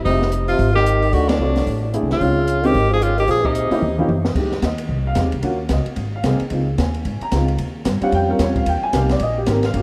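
A cool, moody small-group swing-and-bop jazz excerpt at 223 BPM opens with a veiled, breathy cup-muted trombone and a woody pizzicato upright bass, joined at once by an up-front tenor saxophone melody with light vibrato and scooped notes (both horns touched by analog delay), a slightly detuned upright piano with audible action noise, and a dark-cymballed drum kit with a punchy kick and high-tuned snare that plays a fill before the horns stop at 4.0 seconds, leaving piano, bass and drums in a dreamy church-reverb haze.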